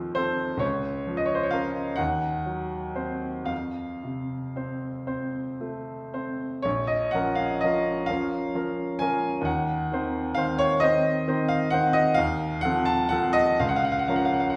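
Wistful and melancholic, this 14.6-second passage from a longer romantic classical nocturne in Bb minor unfolds in a slow, rubato 6/8 at roughly 37-45 BPM on a bright grand piano with a brilliant, open tone and long sustain. It ranges from Bb1 to A5, settling onto a new phrase at 6.7 seconds, and is heard from further back in a large studio with a wet, lingering reverb.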